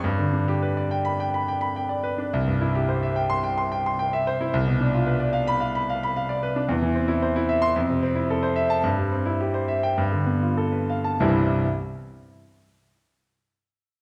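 Classical virtuoso piano study in C major, brilliant and heroic in mood, moving with a rubato feel between 93 and 113 BPM and tuned slightly low to A4 = 438 Hz. A lone grand piano with a clear, smooth, vintage tone and short sustain sits up front while spanning C2 to C6, its harmonies passing from G through Fmaj7 and G9 before settling on C at 11.2 seconds. It slows between 5.6 and 11.2 seconds, and the whole passage, cut from a longer piece, is set in a wet recital hall heard from further back in the room.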